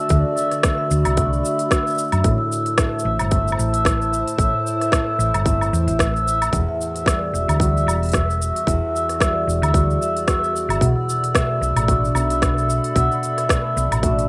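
A lightly swung 112 BPM groove in 4/4 from a tight electronic kick and an organic electronic kit of crisp hi-hat, cabasa, rim click and woodblock carries this wistful, autumnal folktronica excerpt in E minor, where a round, dark hollow-body electric bass and thumb-plucked concert harp arpeggios with delay sit beneath an up-front vibraphone with slow motor vibrato, 12-bit sampler grit and tape echo, while a warbling, detuned tape-like pad with chorus, phaser and reverb hums mellow sustained chords in the background through D, Am, Emadd9 and Bm7 in a rough home-demo mix.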